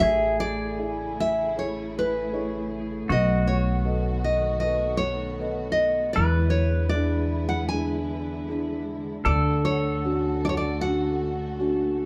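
In a straight 4/4, this melancholic, heartbroken acoustic folk-pop ballad, cut from a longer piece, sets a full-bodied, fingerpicked nylon-string guitar melody up front over a woody pizzicato upright bass, a soft, thick-felt upright piano, a twangy pedal steel guitar with volume swells and slide as a second line, and a lush bowed string section holding dark sustained chords through Amaj7, B7, E7 and Dmaj7, the band playing live in one room with moderate reverb.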